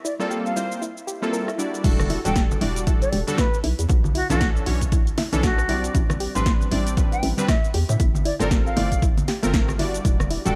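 Swung sixteenths at 117 BPM in 4/4 give this smooth, hypnotic deep house cut, taken from a longer piece in E minor, its easy roll. A punchy, tape-warm analog drum machine opens with crash, hi-hat, rim click, shaker and snare, alongside an airy, distant jazz flute with vibrato and dub echo, a soft, nasal pluck playing chorused arpeggios in the background, and round, detuned sawtooth key stabs with a filter sweep, chorus and sidechain pumping. A faint electronic swell from 1.0 seconds leads into the drop at 1.8 seconds, where an up-front electronic kick arrives together with a hollow, bouncy FM bass that pumps against it. Vintage, band-limited congas played with soft hands join in the background just after. Under a chord cycle moving through Gm11, Em11, Bm11 and Am11, the dry mix sits beneath a prominent layer of vinyl crackle.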